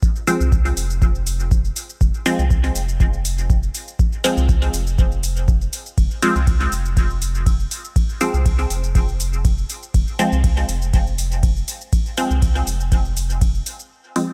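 A dry mix opens this deep, nocturnal dub techno excerpt in F minor at 121 BPM, where an electronic kick drum with a deep analog thump and a booming analog drum machine of metallic hi-hats, ride cymbal and shaker, both re-recorded in a large room, drive a swung 4/4 beneath a round, sine-based sub bass from 0.4 seconds and a muted, detuned sawtooth chord stab with a plucked filter, phaser, sidechain pumping and dub echo holding on Fm.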